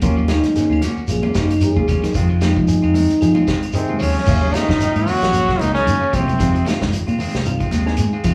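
Funky and driving, this afrobeat excerpt moves at 113 BPM in Eb dorian with a swung sixteenth feel, built on a round, punchy fingered bass, a vintage kit with dark cymbals in a pumping room, and grainy shekere, soft-handed congas and faint woody claves, while a reedy electric piano with phaser, a slightly broken-up arpeggiating guitar and dark clean guitar stabs with spring reverb fill out the groove over Ebm9 and Fm7. A veiled, breathy trombone in a bucket mute takes the lead with scooped notes from 0.3 s, then at 3.7 s a brilliant, forceful trombone steps up front with vibrato, backed by a very quiet trombone section and a raspy tenor saxophone in the background until 6.7 s. The band sounds as though playing live together in one room, with moderate studio reverb.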